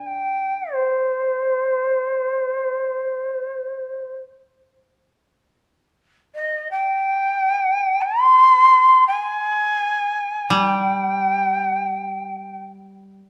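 Set in free time, this short excerpt of Japanese traditional music in C hirajoshi carries a still, austere mood, tuned slightly low to A4 = 437 Hz. An airy bamboo shakuhachi leads the melody between C5 and C6 with vibrato, a crisp chiff on its attacks and a distant yet up-front presence. A dry, woody koto played with fingerpicks sounds only briefly at the start, then returns at 10.5 s to accompany in a lower register until 13.2 s, all within the moderate reverb of a recital hall.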